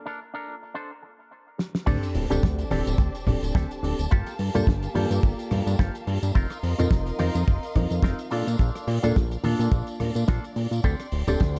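A swung sixteenth-note groove in 4/4 drives this sleek, groovy nu-disco excerpt, cut from a longer piece. It opens with a twangy, compressed electric guitar riff through an envelope filter, picked cleanly with subtle chorus and dub echo, playing alone as a filter sweep moves through it until a drum fill at 1.6 seconds. The drop lands at 1.9 seconds with an impact and a very quiet electronic sub drop. Then a tight, dry kick with a rolled-off top sits up front beside a thick, nasal, saturated analog bass with a fast attack and evolving tone. A damped 70s kit with a fat snare, rim clicks, hi-hat, tambourine and crash, along with hard-handed maracas and congas in the background, fills out the rhythm. A reedy, worn electric piano, slightly out of tune and heard through its own speakers, carries phaser, sidechain pumping and dub echo, while a focused, bowed studio string section holds sustained chords with vibrato, all within an echo-heavy mix and a small, lightly reverberant room.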